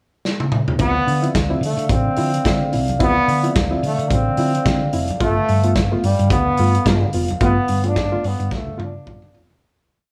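A bright, punchy trombone leads this glamorous, danceable disco piece at 109 BPM in D dorian, playing hook phrases with light vibrato and scooped notes over a Dm7 groove that shifts to G9 at 5.2 seconds. A studio drum kit with a punchy kick opens with a fill from 0.2 seconds before settling into a four-on-the-floor beat with open hats on the off-beats. A round, dark hollow-body bass plays octave lines with slides alongside a barky, lightly overdriven electric piano groove, a mellow French horn section holding background chords, and very quiet congas, all within light small-room reverb until the fade-out beginning at 7.4 seconds.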